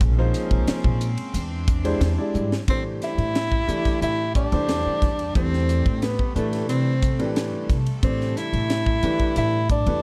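Electric jazz fusion at 90 BPM in 4/4 with a straight feel, this short cut from a longer piece sits in A minor and carries an intense, nocturnal mood under a dark production with light reverb. From the start, a clear, intimate concert grand piano with audible action noise, deep bass and a boxy tone plays accompaniment, while a chamber string section holds bowed, reedy, gut-string chords in the background. A thumpy, woody upright bass plucks the low line, and a polished fusion drum kit with bright cymbals, a high-tuned snare and a punchy kick sits up front. The harmony moves from Bbm9 to E7alt before a drum fill from 2.3 to 2.7 seconds leads into the second section on Am9. At 2.7 seconds a breathy tenor saxophone takes the solo melody up front, with vibrato and scooped notes in a jazz style, and a very quiet, clean hollow-body guitar adds a compressed, fingered second line above it.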